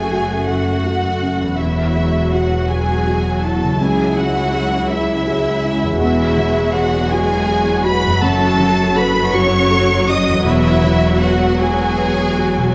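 A rubato 6/8 pulse at 54 BPM in dotted quarters carries this moving, tender cinematic passage in E major, where a smooth, warm violin section sings the melody over a distant, lush second violin line, while a felt-muted upright piano with audible action noise, a focused viola section, a dark, roomy French horn section holding chords, ringing thumb-plucked harp arpeggios, a rich but very quiet cello section and a double bass section on the low end sit further back in a moderate scoring-stage reverb.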